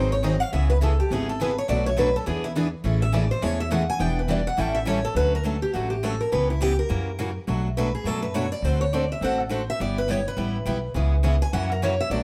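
A lively, playful acoustic string swing excerpt in the manouche style opens at once at 207 BPM with a swung feel. A pizzicato upright bass sits up front with a woody, thumpy gut-string tone, alongside three bright steel-string guitars: a boxy parlour guitar with audible finger squeak carries the up-front second line, a concert guitar picks out accompaniment throughout, and a full-bodied jumbo guitar adds accompaniment until 5.0 s before returning at 9.8 s. A guitar solo runs over a brisk cycle of seventh chords, with the key moving from A major to D major at 5.2 s, all captured as a band playing live in one room with light reverb.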